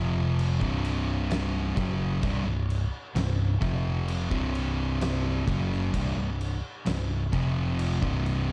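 A dark, dry, warm production carries this brief, brooding cut of stoner and doom metal at a hypnotic 65 BPM in 4/4, where two thick fuzz guitars, one up front and one in the background, grind a low C5 riff ranging from C2 to F#3 over a growly, overdriven fingered electric bass, and at 0.4 seconds an oversized, low-tuned acoustic drum kit joins with a punchy kick, a fat snare and dark crash cymbals in a saturated, gritty stone-room sound.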